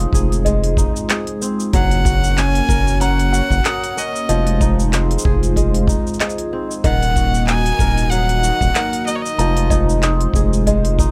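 Wistful and autumnal, this folktronica excerpt moves at 94 BPM in 4/4 with a gentle sixteenth-note swing, its chords drifting from Fm7 through Gb and Ebm before settling back on Fm7. A round, deep analog bass sits up front, mellow and sustained, while a smooth, detuned pad holds slow-attack chords bathed in chorus and plate reverb. Bright, crisp kora arpeggios ring through tape echo, and a worn, slightly out-of-tune celesta with soft felt hammers adds a delicate, bell-like second line from the background. The drums pair a tape-warm electronic kit of handclaps, smooth hi-hat and shaker with a boomy acoustic kick placed far back, which enters at 0.1 seconds. At 1.7 seconds a single clear violin takes the melody with light vibrato and an airy, nasal bow, sounding intense and slightly boxy through echo and reverb before it falls away at 9.7 seconds.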